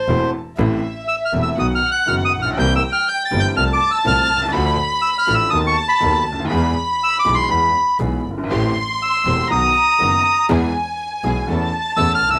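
A reedy, up-front bandoneon carries the melody over a soft, sul tasto chamber violin section in this melancholic, sultry tango excerpt in A harmonic minor at a rubato 121 BPM, where a bright, open baby grand piano plays the accompaniment, and those three parts share a cassette-tape grain while a close, earthy bowed double bass holds the low line and a very quiet, lush studio string section adds brief stabs at 0.1 seconds and again from 8.5 to 12.2 seconds, all in a lightly reverberant home-recorded sound.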